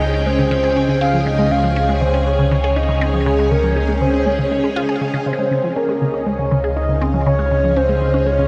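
This cosmic, luminous stretch of sequencer-driven space music opens with four parts sounding at once over a Dbadd9 chord. A dark, evolving analog drone anchors the bass with detuned, ring-modulated tone, while a lush vintage string machine holds sustained chords up front, its ensemble chorus and phaser giving the full-ensemble sound a moving shimmer. A juicy, squelchy resonant blip pluck repeats a bright riff through phaser and delay, its quick, short notes popping against the pads. Alongside them, a mellow, round octave-layered synth lead carries the melody with a touch of vibrato, chorus and delay. At 5.3 s a bubbling stepped-filter texture joins, barely audible beneath the rest, as the music moves into its second section. The whole passage floats in a huge, wet ambient reverb with a long, glowing tail, and it is cut from a longer piece.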